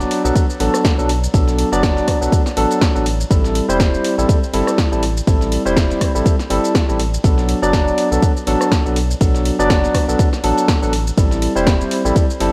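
Deep and hypnotic, this deep house excerpt at 122 BPM in B phrygian swings gently as a barky, lightly overdriven tine electric piano plays up-front stabs with chorus, delay and sidechain pumping over Bm7 and Am7 chords, joined by a full sine-and-triangle sub bass with an octave, a punchy analog drum machine with hi-hat, ride, rim click, shaker and snare, a very quiet gritty sampler-style kit entering at 0.1 seconds, and a tape-warm layered electronic kick arriving at 0.4 seconds, all set in a dreamy, reverb-soaked mix with vinyl crackle.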